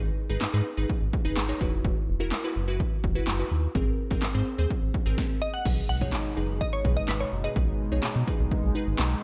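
A glassy, chorused wavetable pluck and a round, deep analog bass open this bittersweet yet confident dance-pop fragment at 126 BPM, both pumping to the sidechain over G#m, Esus2 and G#add9 chords, before a punchy analog drum machine joins at 0.4 seconds with kick, snare, handclaps and crash cymbal re-recorded in a large room and set up front; a second, more nasal crystalline pluck carries the melody through digital delay from 5.4 seconds, and a shimmering retro pulse-width pad with a slow attack breathes in at 5.9 seconds, just after the harmony moves to B6, all within a digital ambience.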